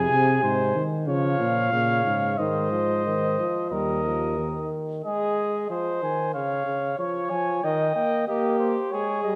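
Contemplative and serious, this fragment of a classical imitative canzona for brass ensemble moves in a steady 4/4, with a mellow trumpet carrying the melody over a warm flugelhorn second line, a trombone with light vibrato in accompaniment, and a smooth-topped bass trombone anchoring the bass until it stops at 4.7 s, all set close and up front in a lush recital-hall reverb as the harmony travels from F minor through Bb minor toward Eb, Ab and Db.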